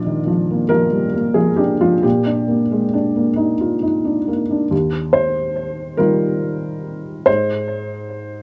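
A felt-muted upright piano opens alone, sitting up front with a soft, boxy tone, short sustain and audible action noise from its mechanism. This brief neoclassical minimalist fragment, cut from a longer piece, moves slowly at 44-48 BPM in a rubato 6/8, its mood melancholic and intimate. The solo piano spans Eb2 to D5, resting on Bb before shifting at 4.7 seconds to Ebadd9 and settling on Ab at 7.3 seconds. A modest small-room ambience surrounds the instrument, while a worn cassette-tape character adds a warbling pitch drift to the recording. Tuned to A4 = 441 Hz, the piece feels close and fragile, like a private sketch played for one listener.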